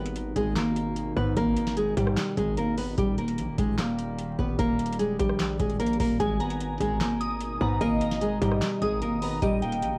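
Hip hop trap with an eerie, hard-hitting mood, moving at 149 BPM in a half-time feel in G# harmonic minor, cut from a longer piece. A full-bodied nylon-string guitar carries the fingerpicked, classical-style melody up front, coloured by cassette tape, over a dark, warbling pad that sits in the background with chorus and its own reverb, holding nostalgic, detuned chords. A heavy, saturated 808-style bass punches underneath, while a booming analog drum machine supplies a deep kick, crisp snare, handclaps, rim clicks and metallic hats, with a short room on the snare, clap and hats. At 6.2 seconds, glassy digital keys with chorus and a filter sweep join up front, adding decaying accompaniment high above. The harmony alternates between G#madd9 and D#, and the whole recording has a home-cassette character with vinyl crackle and digital ambience.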